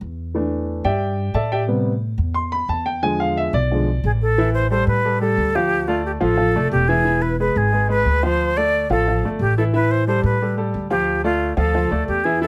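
A straight 4/4 salsa pulse at 179 BPM in A minor drives this fiery, danceable cut from a longer piece: a woody pizzicato upright bass starts at 0.0 seconds, a polished, present grand piano with short sustain enters at 0.3 seconds over A7sus4, Am7 and E7b9, and an airy silver concert flute with crisp attack and vibrato carries the melody from 4.0 seconds as the harmony moves among A5, Dm and E7, in a close, detailed sound with light reverb.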